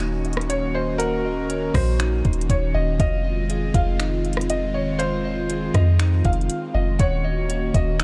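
A dry excerpt of hazy, ethereal cloud-rap at 120 BPM in a half-time 4/4 feel, set in Eb dorian as the chords move from Ebm7 to Fm7 at 3.0 s and back to Ebm7 at 7.0 s. An airy, breathy pad with chorus and sidechain pumping holds sustained chords, while a clean, picked electric guitar plays arpeggios through a low-pass filter and digital delay; underneath, a round, deep 808-style bass and an up-front, tape-tinged R&B kit of soft kick, metallic hi-hats, finger snaps and rim clicks carry the beat. From 0.5 s a felt-muted upright piano adds an intimate, mellow melody, also low-pass filtered and treated with digital delay.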